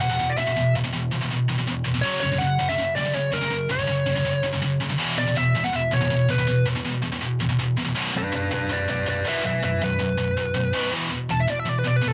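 The recording has a rough, homemade cassette character, with a moderate small-room reverb giving the guitars a close, boxy space. This is a heavy, aggressive metal fragment in B minor, cut from a longer piece and driving at 162 BPM in a straight 4/4. A scooped, double-tracked rhythm guitar, bright, high-gain and distorted, sits up front, picking a low riff between B1 and F#3 throughout. Above it, a warmer high-gain lead guitar, also distorted and up front, carries the melody from D4 to A5, its tone trailed by an analog delay. The harmony moves through power-chord shapes on E5, F#5 and back to E5 before reaching Bm at 8.0 seconds, where the lead breaks into a solo that runs to the end at 12.1 seconds, with the harmony returning to E5 at 10.9 seconds.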